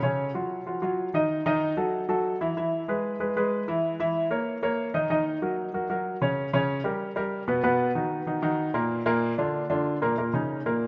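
A moderate plate reverb with a long tail surrounds the sound, yet the piano stays present and up front, its notes clipped by a short sustain. This is a driving, danceable Latin piece in Eb minor, moving at a brisk 189 BPM in a straight 4/4 feel, and the clip is cut from a longer work. A warm baby grand piano plays solo throughout, ranging from A#2 up to Fb5 and sounding from the start to 10.9 seconds. The harmony shifts quickly and colorfully, passing from Gb5 through Ebdim, E and Dbm, then on to Bbmadd11, Gb6, Gm and Bmaj7. The passage settles on Bb before landing on Eb5 at 10.2 seconds.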